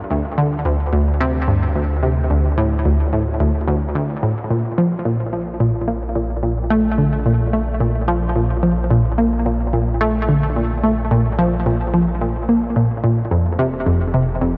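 Ambient, sequencer-driven space music with a luminous, cosmic mood, cut from a longer piece, where an up-front analog pluck carries the riff from 0.1 s with a bright, detuned sawtooth-and-square bite, a noise layer, filter sweep, chorus and delay. Beneath it a round analog bass, deep and mellow, blends sine and sawtooth with ring modulation and tube saturation, sitting low and evolving until 14.6 s. A huge ambient reverb and worn, warbling cassette tape with pitch drift wrap the sound, and the chords shift from D5 to an open stretch at 4.5 s before F5 arrives at 13.3 s.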